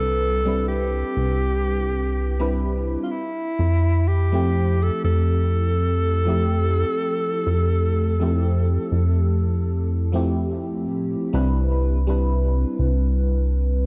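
A mellow alto saxophone, an FM electric piano layered with a soft pad, and a chorused synth bass all start together in this faded, nostalgic vaporwave fragment, cut from a longer piece, with a slow, gently swung 4/4 feel. Up front, the saxophone carries a jazz-style solo melody with vibrato, subtone, scooped notes and a smooth top, trailed by tape echo. The lush, dreamy electric piano supplies accompaniment through a phaser, subtle chorus and tape echo, its fast attacks decaying over a faint noise layer. Beneath it, the dark, glossy bass blends pulse and sawtooth tones with a filter sweep and sits slightly louder in the mix. The harmony moves from Cmaj9 to Fmaj7 and back. The saxophone drops out at 10.3 seconds, and the piano and bass carry on into a new section at 11.3 seconds, where the chord returns to Cmaj9. Light reverb and a worn, warbly cassette sound with drifting pitch give the recording its aged character.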